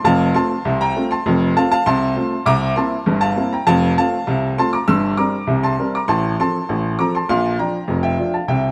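A straight 2/4 pulse at 99 BPM drives this cheerful, lively ragtime piano passage in F major, tuned to A4 = 444 Hz and cut from a longer piece. A brilliant, woody upright piano plays alone throughout, polished and present with long sustain, ranging from F1 to E6 as it moves through F, C7, F, C5/G, F/A and Bb. A moderate plate reverb with a 2.8-second tail places the sound further back in the room.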